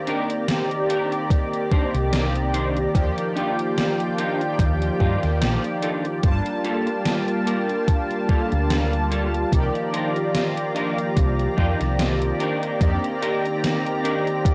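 A dry, gritty hardware recording with a cassette-tape haze and light reverb opens this hazy, woozy vaporwave fragment, cut from a longer piece and set to a gentle swung feel. Mellow synth brass carries the accompaniment from the start, its detuned sawtooth tone round and dark with vibrato, a filter sweep, analog chorus and delay, sitting up front over a lush unison pad that warbles with thick, vintage sustain and 12-bit sampler grit in the background. A clean, fingered electric guitar plays a riff through ensemble chorus and analog delay, while a gated 80s digital drum machine supplies hi-hat and a gated-reverb snare. An overdriven, thumpy electronic kick arrives at 1.3 seconds, and a woody fretless electric bass, hollow-bodied and amped with tube saturation and chorus, joins at 1.9 seconds before dropping out at 13.0 seconds. The harmony drifts through Cm9, Ebmaj9, Gm9 and Cm11.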